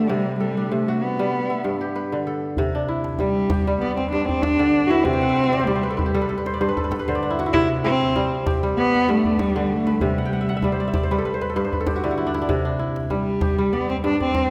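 Flowing and warm, this short cut from a longer piece of West African string and xylophone music moves at 97 BPM in C lydian with a light swing, its bowed, dark cello singing an expressive melody full of vibrato and portamento up front while the crisp, ringing kora spins fingerpicked arpeggios beside it, adding fills from 5.1 to 7.5 seconds and again from 10.2 to 12.5 seconds. A soft-handed, close and dry djembe joins at 2.6 seconds, and the whole performance sits in the lingering wash of a church reverb, alternating between C and G harmonies.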